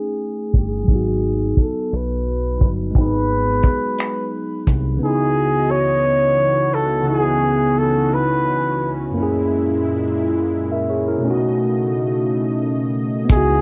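Slow, sultry late-night R&B in 6/8 at 58 BPM in C# minor, cut from a longer piece, with a filter sweep across the opening 5 seconds and a dusky, low-passed home-cassette sound. A scooped, distant flugelhorn carries the melody over a mellow tine electric piano with phaser, while a dark, round dub bass and a cloth-damped, thuddy drum kit of kick, hi-hat and finger snaps sit up front until about 5.0 seconds. From there a smooth, detuned sawtooth pad with chorus holds sustained chords through C#m11, F#9 and B9, and the flugelhorn drops out at 8.9 seconds.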